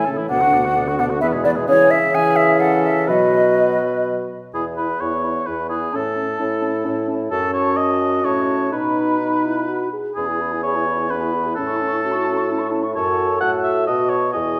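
A wind quintet opens together in a quick, cheerful classical-period movement in E major at 128 BPM in 3/4 with a rubato feel, the airy, hollow silver flute carrying the melody with vibrato over an oboe second line. A dark, distant clarinet and a mellow French horn fill in the accompaniment while an up-front bassoon with light vibrato holds the bass, and the whole quintet sits in a wet recital hall reverb. A new section begins at 4.5 s, and the spirited passage comes to rest on a B7 at 13.9 s, cut from a longer piece.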